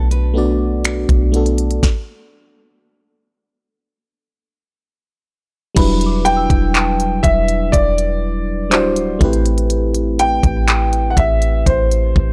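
Longing and sensual, this contemporary R&B fragment opens on a glassy, bell-like FM electric piano with chorus, a soft, round 808-style bass and a trap kit with knocking kick, sharp snare, crisp hats, finger snaps and handclaps, while a fingerpicked nylon-string guitar touches a single note through analog delay in the background before falling away. After a stop from 1.8 to 5.8 seconds, a delicate celesta with analog delay glints faintly, and an intimate concert grand piano, its action noise audible, takes the melody from 6.2 seconds. The small room and gritty transformer saturation lend the dry mix a textured, close-up edge.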